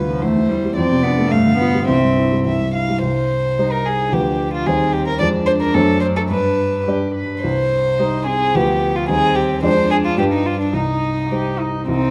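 Close, detailed microphones catch a piano trio in a recital hall of moderate reverberation, giving an intimate yet spacious sound. This quick classical-period movement, cut from a longer piece, moves at 109 BPM in 2/4 with a rubato feel, and its mood is spirited and cheerful. The violin carries the melody up front, its tone glowing and airy, played sul tasto with light vibrato and a soft attack. Beneath it, a dark, pure cello plays a second line, also bowed sul tasto with a soft attack, floating and somewhat distant in the blend. The grand piano supplies smooth, vintage-coloured accompaniment from the low bass to the middle register, sitting up front alongside the violin. The opening bars rest in C major on a C/E to G7 to C progression, then at 3.0 s the music turns to C minor, passing through Dm7b5/F, D7/F# and G before settling back on Cm at 10.7 s.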